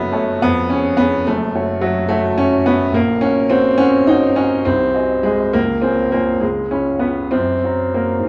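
An upright piano carries this short passage alone, its tone woody and open and placed up front. It is a romantic character piece in 6/8, played with a free rubato that gives the lyrical line a passionate quality. The harmony moves from C#/E# through F#m7, Gb/Bb and Ab7/C toward Db and Db7, settling on Gb near 7.3 seconds. A wet recital hall reverb surrounds the instrument, and the overall production leans dark and warm. The clip runs just over 8 seconds and is cut from a longer work.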